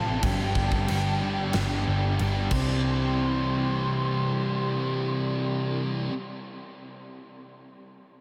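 A thick, up-front fuzz guitar with ensemble chorus plays a riff in this wistful, blissful shoegaze and dream pop rock excerpt at 92 BPM in C major, alongside a compressed overdriven electric guitar trailing reverse reverb, a dark, round, foam-muted picked bass, a high warbling nostalgic lead with vibrato and diffuse ambient delay, and a gated 80s drum kit with a fat snare, tight kick and bright cymbals that plays only from 0.2 to 2.7 s, all soaked in a huge dreamy reverb as the harmony moves from G to C.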